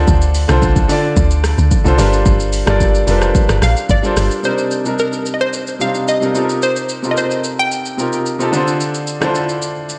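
Soaked in lush hall reverb with a dreamy haze and a softened top end, this soulful, deep amapiano fragment opens on a drop where a round, percussive log drum bass sounds until 4.3 seconds beneath a clear, up-front concert grand piano playing rich extended chords, while a tape-warm deep house kit of kick, hi-hat, rim click and shaker carries vintage 12-bit sampler grit, and a hollow, bouncy, detuned square pluck with chorus and delay carries the melody from 3.6 to 8.5 seconds.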